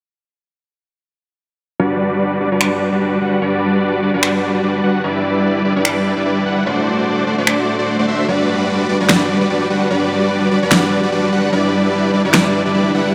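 A swung, half-time groove drives this bright, lush slice of future bass, with overdriven electronic finger snaps and a fat snare drum sitting in the background from 2.6 seconds. Up front from 1.8 seconds, a huge, detuned supersaw plays the riff through Gmaj7, Em7 and D7 chords, its thick sound carrying vibrato, a sub octave and an airy noise layer, shaped by a low-pass filter sweep and analog delay. A cathedral reverb soaks the whole dreamy mix.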